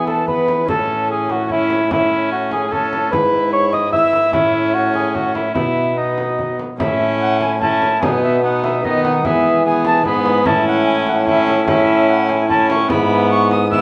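Festive and courtly, this renaissance-style consort dance moves in a straight 3/4 at 148 BPM, cut from a longer piece, with a mellow, wooden alto recorder carrying the melody from a distance, its tongued chiff and vibrato set against an up-front cor anglais on the second line. A bowed viola with a reedy gut-string tone and a ringing, fingerpicked concert harp fill in the accompaniment, while a close-miked trombone holds the bass and a small, bright frame drum enters at 0.1 s in the background. The ensemble sits in a moderate large-studio reverb as the harmony circles around E, A and B across two statements of the same section.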